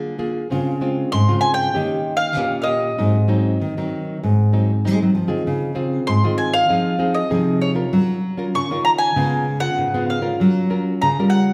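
Two nylon-string guitars open this bittersweet, nostalgic samba and choro passage in D-flat major at 97 BPM, one thumb-plucking a full-bodied bass line while the other fingerpicks classical accompaniment through chords such as Dbmaj7, Eb7 and Ab7. At 1.1 seconds a mellow, woody mandolin enters with the picked melody, its double strings ringing high and up front alongside both guitars. A wet recital-hall reverb, as heard in a church or concert hall, surrounds this brief section cut from a longer piece.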